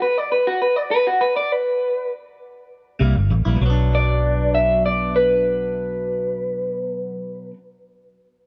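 A straight-eighth soul blues in 4/4 at 99 BPM, brooding and mournful, in B harmonic minor, cut from a longer piece. It opens on a stop, with the slightly broken-up, lo-fi lead guitar through a small old amp carrying the melody alone, bathed in lush chorus and sitting up front. At 3.0 seconds a dark, foam-muted fingered bass and a bright, twangy clean guitar playing phased stabs join over a C7 that moves to Bm, all in light reverb.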